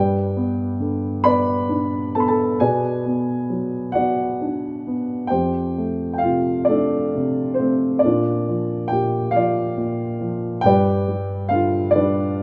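Dark and wistful, this lyrical classical fragment features a solo grand piano with a mellow, boxy tone, heard up front in light reverb across the full 12.4 seconds. It moves in a slow, rubato 6/8 at 45 BPM, counted in dotted quarters, spanning F2 to B5. The harmony passes from G through Bm, Fadd9 and Bb before settling back on G.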